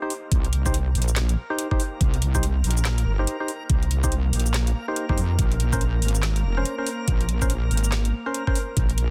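Deep dubstep at 142 BPM in a half-time feel with a swung sixteenth lilt, this cavernous, meditative fragment moves from C minor to B-flat minor add nine at 5.4 seconds. A heavy, saturated wobble bass sits up front over a knocking electronic kick, while a garage kit of woody snare, metallic hats, handclaps and shaker adds layered, small-room detail. Hollow, dark, quickly decaying organ stabs with chorus and dub echo sit above a reversed, dreamy texture that swells with bright granular grain and its own reverb, all pressed into a dense, heavily limited modern master.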